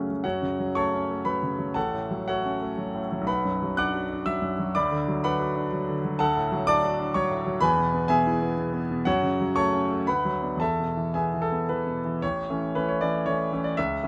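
Closely miked and nearly dry, this brief cut from a longer romantic character piece for solo piano places a brilliant, polished grand with long sustain up front, spanning A1 to F#6 as it moves with passionate rubato in 3/4 at roughly 107-129 BPM from F# minor toward A major from 6.2 s, settling on an A chord as a new section opens at 12.2 s.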